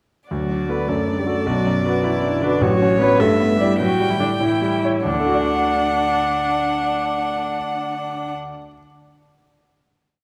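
A complete, spirited yet graceful classical-period movement for piano quartet opens at 0.3 seconds with a clear, deep-bassed concert grand rocking two-note chords over its bass, up front beside a close, veiled violin carrying the vibrato-touched melody, while a softly attacked con sordino viola and a smooth-topped cello (the cello doubling the tune at the octave and in unison) add dark bowed lines in a moderate concert hall reverb, the rubato lilt in 6/8 slowing from 2.0 seconds until the quartet settles on a final chord at 5.1 seconds.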